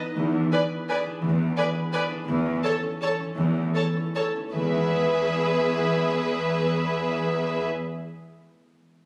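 Classical orchestral ballroom waltz in E major, elegant and sweeping, moving in a rubato 3/4 between 146 and 186 BPM and slowing from 1.7 to 4.5 seconds, with ringing concert harp arpeggios opening at 0.0 seconds, joined by an up-front, intense cello section holding the bass, a lush violin section singing the high melody with vibrato, a second focused violin line and a clear viola section's accompaniment, all over chords moving from E7 through A/E back to E in a phone recording of a moderately reverberant scoring stage.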